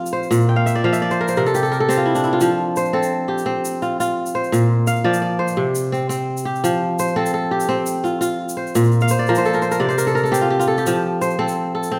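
Ringing, crisp fingerpicked kora arpeggios sit up front in this flowing, warm West African traditional string excerpt in F major at 114 BPM in a straight 12/8, moving through F, Bb and C chords with kora fills at 0.5 and 9.0 seconds, while a grainy tube shaker sits low beneath it and a moderate recital-hall reverb surrounds the playing.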